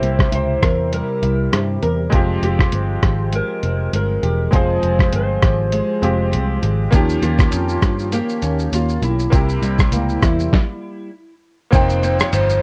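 A slightly broken-up electric slide guitar, touched with subtle chorus and tape echo, carries the melody through this wistful, lonely bedroom-pop piece in F minor at 100 BPM with a gentle 16th-note swing, over a woody, slightly detuned upright piano with audible action noise and cassette-tape character, a fingerpicked flamenco guitar steeped in lush chorus and warbly pitch drift, a dark, round, foam-muted electric bass, and an up-front, muffled, pitched-down sampler drum kit with a thumpy kick and overdrive, all bathed in worn, warbling old-tape texture and light reverb, before a stop from 10.5 to 11.7 seconds.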